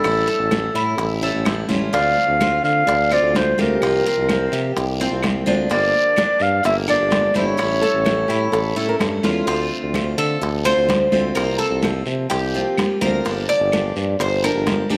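A mellow clarinet leads this sultry Cuban son and guajira excerpt up front in D minor at 127 BPM, carrying a smooth, classical-style melody over a moderate echo-chamber reverb and small-room ambience. Beneath it, a warm tuba holds the bass with punchy, scooped notes and a light vibrato, while a Cuban tres picks metallic arpeggios on doubled strings, some of them octave-doubled. A bright, picked steel-string acoustic guitar sits in the background, and the percussion blends thick-skinned congas played with soft hands, tight high-tuned bongos, dry woody claves and a raspy guiro. A small, fingerpicked nylon-string guitar adds a brief second line at 7.8 seconds. With a drum fill at 9.2 seconds the clarinet drops out, and from 9.5 seconds the tres takes a solo over the Dm7, C7sus4 and Gm7 changes.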